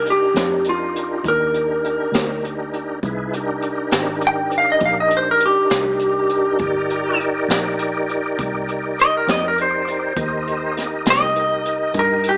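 A clean lap steel guitar and a tonewheel organ open this mournful, soulful slow blues in C minor, moving at 67 BPM in a straight 12/8 over a single Cm7 chord. The lap steel carries the melody up front, its bright, twangy slide tone compressed and scooped as it ranges from F4 to G5. Beside it, the organ holds full, thick sustained chords, lightly overdriven with chorus vibrato, audible key click and a fast rotary speaker. A vintage muted fingered electric bass, also present from the very start, sits low in the mix with a dark, round, foam-muted sound, while a jazz brush kit enters at 0.1 seconds with hi-hat, a high-tuned snare and a boomy kick. Light reverb and studio ambience surround this short cut from a longer piece, which carries a small-speaker character.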